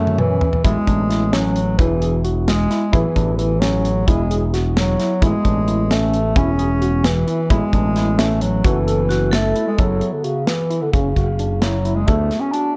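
A mellow bass clarinet carries the melody up front, its punchy, roomy tone touched by a slapback echo and played in a classical style across a low register. This driving, intricate progressive instrumental, cut from a longer piece, moves in a straight 5/8 at 262 BPM counted in eighths, in F# minor. Alongside it, a modern studio drum kit opens with a fill before settling into polished, airy playing with a tight kick and medium-tuned snare. A bright, growly fingered electric bass sits up front, while an overdriven tine electric piano adds barky, gritty arpeggios with fast tremolo in the background, and a dark concert grand piano supplies very quiet accompaniment with a deep low end. The harmony cycles between A6 and E before reaching F#m7, where a vibraphone with hard mallets briefly rings out a metallic second line just ahead of the shift into a new section at 9.8 seconds on F#7, and the passage closes on D. 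The production is dark, with light reverb and small room ambience.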